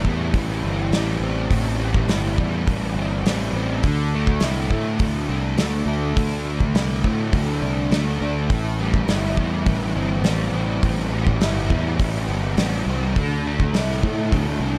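A double-tracked fuzz guitar riff, dark and up front with analog chorus, leads this hazy, dreamy shoegaze and dream pop excerpt at 103 BPM in A minor, moving between Am7 and Dsus2 over a growling, bright overdriven fingered bass and a loose indie drum kit with a tight kick and rolled-off top, all in a dry, dark production.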